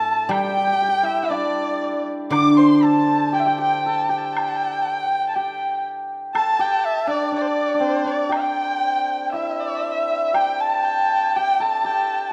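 Graceful and festive, this brief cut from a longer Chinese traditional chamber piece moves at a free, rubato 60 BPM in 2/4, set in the G zhi mode. A dark, smooth-topped erhu carries the melody with vibrato and portamento, while a second, nasal and earthy erhu and a bright, shimmering hammered dulcimer play second lines, and a silvery guzheng with fingerpicks rings beneath them until 5.4 seconds. A close woodblock sits in the background from 0.3 to 10.6 seconds, and a moderate concert hall reverb surrounds the ensemble as the music shifts into a new section at 10.3 seconds.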